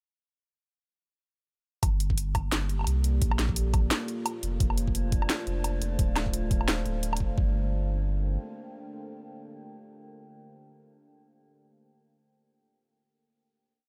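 This is a short, heavy and dark half-time drum and bass piece with a swung feel, opening at 1.8 seconds on a drop in which the knocking, overdriven electronic kick, a sparse kit of cracking snare, bright closed hats and a low woodblock, and a thick, saturated sub bass holding long notes all arrive together. The kit sits up front with an overdriven bite and a small-room character, while the sub bass has a fast attack and sustains beneath it. A moody sawtooth pad with detuned unison voices and a sub octave fades in slowly, its chorus and built-in reverb giving it a hazy depth as the chords shift through Gmadd9, Bbadd9, F and Dm7, with a sidechain pumping. Midway through the drop, a faint, eerie FM drone holds a single high note in the background, warbling and metallic with a vintage, mellow tone. The drums fall away around 7.4 seconds, and the sub bass lingers until about 8.4 seconds, after which the pad rings out on a final Gmadd9 chord until 10.6 seconds. 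The overall mix is dry and close, with reverb confined to the pad and drone.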